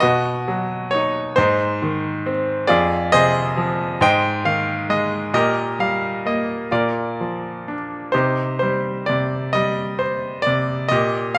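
A bright baby grand piano opens alone, playing a tender, lyrical classical passage that moves in a slow 6/8 with free, rubato timing. Its polished tone sits up front, with short sustain on each note, and it spans from F2 up to G5, tuned to A4 = 439 Hz. The harmony moves from B through Ab, Fm, Ab and Ebadd9/Bb to Bb. At 8.1 s a new section begins on Cm, carrying the tender, warm mood on to the close of this fragment at 11.4 s, cut from a longer piece. A moderate recital-hall reverb with a 1.4 s decay gives the solo instrument a sense of space around it.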